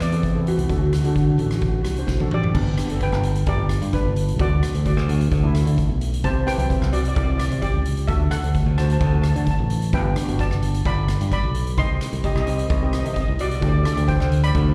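Heard as a live gig through the venue's PA, with a small-room ambience and a recital-hall reverb, this festive, bouncy calypso fragment moves at 130 BPM in a straight 4/4 in G major. A lead steel pan, struck with hard rubber sticks, carries the melody with a shimmering, slightly boxy tone and a slapback echo. A second steel pan, played with medium rubber sticks, adds close-miked, dry accompaniment from 0.1 seconds, also touched by slapback echo. Up front, a growly fingered electric bass anchors the low end. A street-band drum kit sits beside it, with an airy, polished sound, dark cymbals and a boomy kick, and it plays a fill from 2.1 seconds into the second section at 2.5 seconds. The harmony then moves from G through Dadd9 and Cadd9 to a colourful Cm before settling on D7sus4.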